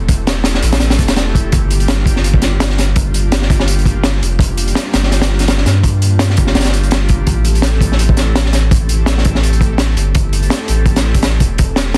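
A crunchy, gritty breakbeat kit with a punchy kick and high-tuned snare sits up front in this dark, atmospheric jungle-flavoured drum and bass excerpt, driven by a thick, saturated sine sub bass and shaded by a soft, breathy pad carrying chorus and vintage sampler grit as the chords move from Am7 to Gm7 at 1.5 seconds and back at 7.3 seconds, all under a dense, heavily limited master dusted with vinyl crackle.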